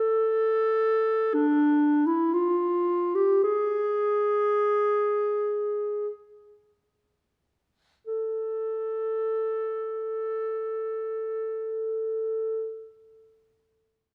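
Moving in free time, this classical piece for unaccompanied clarinet unfolds with an expressive, unmetered flow that gradually slows through its first 8.1 seconds. The mood is yearning and mournful, carried entirely by a single warm clarinet, which sits up front and plays in a classical style from the very start to 12.8 seconds. Its line stays within a narrow span from D4 to A4, tuned to A4 = 442 Hz. After the slowing opening phrase, a second section begins at 8.1 seconds and carries the lament onward. A wet recital hall reverb, with a decay of about 1.6 seconds, surrounds the instrument and lets each note linger in the space. The recording is cut from a longer piece.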